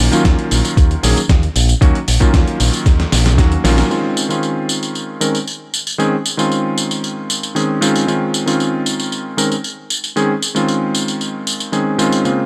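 Lightly reverberant, this feel-good, groovy nu-disco excerpt sets a clangy, vintage electric grand piano, up front with slapback echo and sidechain pumping, over a fingered electric bass through an envelope filter and a thumpy electronic kick, both of which drop out by 3.8 s during a drum fill that closes with a band accent, while a gritty, tape-warm, sampler-style kit of hi-hat, medium-tuned snare and tambourine carries on as the chords move from Ebm7 to Dbmaj7 at 3.9 s.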